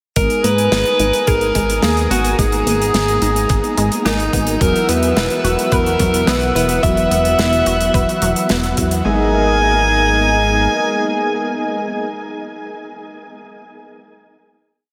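A straight 4/4 pulse from a thumpy, tape-warm machine kick and an 80s-style backbeat of closed hi-hat and snare drives this nocturnal synthwave piece, where a glossy chorused synth bass runs in eighth notes under a shimmering, sidechain-pumped pulse-width pad, a round, bright 8-step analog pluck arpeggio sits in the background, and dark, brassy synth stabs push syncopated held chords through a diffuse delay, while a breathy, up-front alto saxophone carries hook phrases with light vibrato across a dreamy mix soaked in huge reverb until the drums drop out at 9.0 s and a final chord rings from 9.1 s to 11.3 s.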